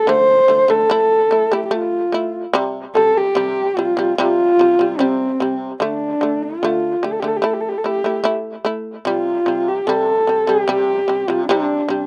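Proud and galloping, this Mongolian folk excerpt moves in a steady, straight four. A dark horsehead fiddle carries the melody from the opening second, its single bowed voice husky and woody, with vibrato and portamento shaping each phrase across a range from C4 to C5. Beneath it, a fretless shamisen plucked with a plectrum plays arpeggios in a lower register, sounding percussive and buzzing, with a slapback echo trailing its notes. Both instruments sit up front, the fiddle clearly louder, and the harmony cycles through D5, A5 and C5, returning to D5 at 5.8 seconds. Recorded outdoors with very little reverb, the sound is dry and immediate.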